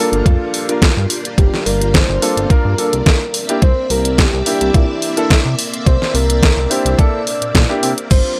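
Riding a lightly swung 107 BPM groove in 4/4, this short, cosmic and groovy nu-disco excerpt pairs an up-front, knocking electronic kick and an overdriven pop kit of crash, hi-hat and deep snare with a glossy, detuned synth bass, a natural concert grand piano pumping under the sidechain, a lush vintage string machine with phaser and ensemble chorus, and a round, dark octave-layered synth lead with vibrato, chorus and analog delay carrying the melody over Gm7 and C9, before a bright, distant cabasa appears at 8.1 seconds, all in a dry, gritty mix.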